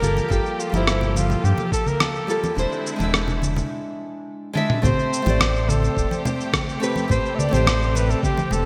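A bright, 1980s-style digital sheen and a lush hall reverb frame this relaxed sunset chillout excerpt at 106 BPM, moving from Gm9 and Eaug7 into A minor at 4.8 s. A smooth flugelhorn carries the jazz-style melody with light vibrato and scooped notes, while a fingerpicked nylon-string guitar, under a filter sweep until 4.8 s, accompanies with delay, veiled con sordino strings sustain chords in the background, and a round, deep analog bass sits up front with tube saturation. A gritty, overdriven sampler-style kit with congas, rim click, shaker and toms, a thumpy electronic kick and dry congas and bongos drive the groove, dropping into a break at 3.7 s before a drum fill at 4.6 s.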